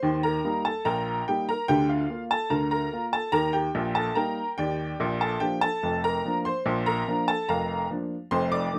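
A clear, woody upright piano carries this short ragtime fragment on its own, sounding slightly detuned and sitting up front with a long sustain. The mood is jaunty and cheerful, moving in a straight two-beat metre across a span that reaches from F1 in the bass up to D6. The harmony moves from Eb to Bb/D, back to Eb, and settles on Bb at 5.0 seconds. Close, detailed microphones catch the instrument's present tone, and a light reverb adds a touch of space around it. Lifted from a longer piece, the passage runs just 8.8 seconds.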